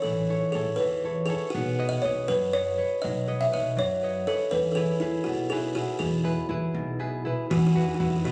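A straight 6/8 pulse at 80 BPM in dotted quarters carries this lively, sunny Italian folk serenade in E major. Up front, a buzzing kalimba with a woody, hollow-box ring sings the melody from E4 to E5 over an up-front, fingerpicked flamenco guitar with audible finger squeak and a warm pizzicato upright bass on steel strings. The A to Badd9 to E harmony reaches Esus2 at 7.5 seconds, all captured on a phone in a moderate recital-hall reverb, in this 8.3-second fragment cut from a longer piece.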